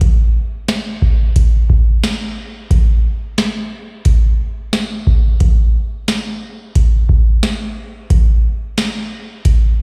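Dream pop excerpt at 89 BPM in a straight 4/4, melancholic and hazy, carried by a booming analog drum machine whose deep kick, crisp snare and metallic hi-hats sit up front with a tape-warm electronic character under light reverb, heard as if played on a big sound system in a bare stone room, running from 0.0 to 9.6 seconds.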